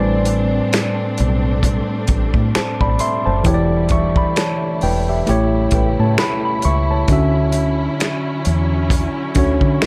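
Smooth and late-night, this slow neo-soul R&B excerpt moves at 66 BPM in 4/4 with a swung sixteenth-note feel, drifting through Am11, Em7, A7 and Dmaj9. A worn, slightly out-of-tune tine electric piano sits up front through a combo amp with plate reverb, carrying the accompaniment over a dark, round, foam-muted fingered electric bass and a lush bowed string section holding sustained chords with vibrato, softer in the mix and bathed in plate reverb. From 0.3 seconds a soul drum kit joins with finger snaps, hi-hat, a tight kick and a medium-tuned snare, its roomy, distant ambience framing the groove under a light overall reverb.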